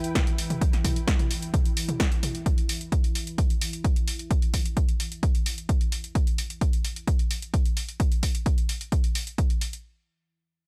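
Driving and industrial, this brief cut from a longer piece of peak-time techno runs at 130 BPM in E minor, held on an Em chord. A dry, punchy electronic kick sits up front from 0.2 seconds, while an overdriven analog drum machine adds hi-hat, snare and toms with sidechain pumping on the hats and toms. Beneath them, a deep, moody sawtooth pad with chorus and reverb drones until 6.2 seconds, and a veiled, muted string section with vibrato fades out in the background by 2.5 seconds.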